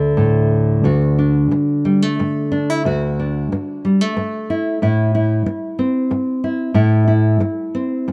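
A fingerpicked nylon-string guitar, warm and up front, carries this short pastoral folk fragment on its own, moving in a loose, rubato 3/4 at around 91 BPM in D mixolydian with tuning set to A4 = 436 Hz. It opens on a D5 chord, settles onto D at 0.8 seconds and shifts to A minor at 4.8 seconds, spanning D2 to F#4 with a classical touch. The dry, close sound of a 1970s-style studio keeps this peaceful miniature intimate and plain.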